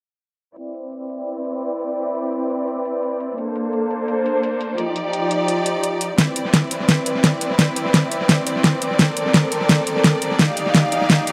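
Liquid drum and bass at 171 BPM in C major with a dreamy, warm mood, this excerpt opens at 0.6 seconds with a lush, bowed string section holding vibrato-rich sustained chords through Cmaj9, Bbmaj9 and Ebmaj9 under sidechain pumping and a filter sweep, while an up-front pop drum kit with a fat snare and metallic hats trails dub echo, and from 6.2 seconds a barely audible punchy electronic kick joins a build-up and drum fill, all set in a moderate plate reverb within an echo-heavy, low-pass-filtered mix.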